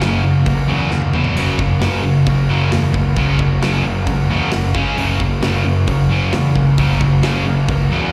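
Hard rock at 133 BPM in F# mixolydian, this energetic, anthemic excerpt from a longer piece is heard as a live gig through the venue's PA, with a recital hall reverb around it. A bright, cranked stack guitar carries the riff with overdrive and slapback echo, backed by a hollow-body semi-hollow guitar and a sludgy, double-tracked distorted guitar sitting in the background, while a punchy fuzz bass drives the low end. A big acoustic rock kit with a boomy kick and medium-tuned snare plays until just before the end, with a drum fill from 0.9 to 1.4 seconds as the chords move between F#, E5 and C#5.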